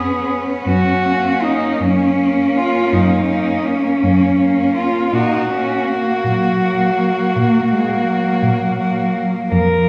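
In a rubato 12/8 at 54 dotted-quarter beats per minute, this tender classical fragment for four bowed cellos in F# major drifts from C#7/E# to F# at 0.7 seconds and on to F#/A# at 5.1 seconds. A rich, smooth and even lead cello sings the melody up front with vibrato, while a warm cello shapes an expressive second line with portamento and vibrato. Beneath them, another cello gives a sliding, singing accompaniment until 9.5 seconds, and a deep bass cello glides below, all bathed in a lush recital-hall reverb heard from further back in the room.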